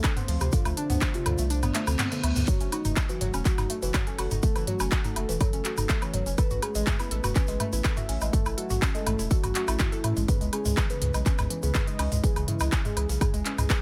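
A straight 4/4 groove drives this melancholic melodic techno piece, with a punchy electronic kick up front, crisp house hats, handclaps, toms and woodblock, a very quiet gritty breakbeat layer of hi-hat, snare and tambourine, and a grainy tube shaker in the background. The kick drops out from 1.5 to 2.5 seconds while a reverse cymbal rises in behind. Over a round, nasal analog bass, a woody, wave-folded pluck spins chorused, delayed arpeggios, a full-bodied octave-layered lead carries the melody with phaser, vibrato and tape colour, and a deep, warbling vintage pad holds moody chords far back, each pumping against the kick as the harmony moves from Dm7 through F#m and Aadd9 to C#m7 in a fairly dry mix.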